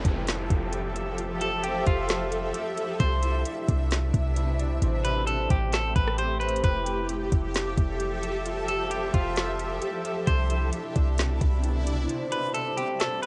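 Dreamy, blissful atmospheric cloud-rap in F lydian at 132 BPM with a half-time feel, this excerpt drifts over Fmaj9, Cmaj9 and Am7 chords, carried by a blurred, detuned granular cloud pad with its own reverb, a ringing fingerpicked concert harp in the background, a deep, boomy sine 808-style bass up front, and a smooth R&B drum kit with a soft kick, woody snare and metallic hats. A background downlifter sounds for the first 3.0 seconds, a bright, clean semi-hollow electric guitar takes the melody from 1.4 seconds with tape echo, and a reversed, swelling texture joins at 8.4 seconds before the bass drops out for a break at 12.1 seconds. The home cassette recording is dry and dull at the top end, lending the drums, guitar, harp and pad a hazy tape character.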